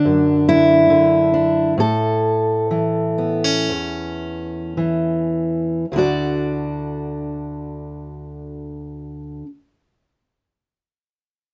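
Loosely rubato in 4/4 at around 51-71 BPM, slowing down through the first 5.9 seconds, this nostalgic, pastoral folk excerpt in D major features a solo fingerpicked steel-string acoustic guitar, up front and warm with fresh strings and audible finger squeak, spanning D2 to D5 in light reverb as it moves from a rootless Bm through A to settle on D at 5.9 seconds before falling silent at 9.5 seconds.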